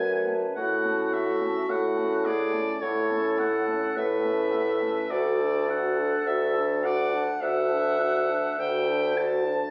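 Captured on a phone in a recital hall with moderate reverb, this short cut from a longer classical piece is a slow, rubato romantic movement for wind quintet, yearning and elegiac in mood. A hollow, vibrato-tinged silver flute carries the melody from the background, while a clear oboe with light vibrato sings a distant second line over the clarinet's roomy accompaniment and the soft-attacked French horn. Up front, a mellow bassoon anchors the bass as the harmony shifts to D major at 5.1 seconds.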